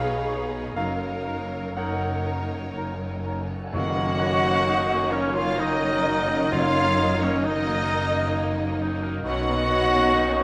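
Tender and hopeful, this rubato cinematic score in 3/4 sets a lush violin section melody over softer second violins, a hollow silver flute, a mellow, distant clarinet and a present cor anglais. A brilliant grand piano, a very quiet viola section and a focused cello section support it, with an even double bass section beneath. A dark, roomy French horn section and soft-mallet timpani join at 3.7 seconds with a band accent, while a very quiet cymbal swell and tam-tam stir from 0.8 seconds, all in a stone-room reverb.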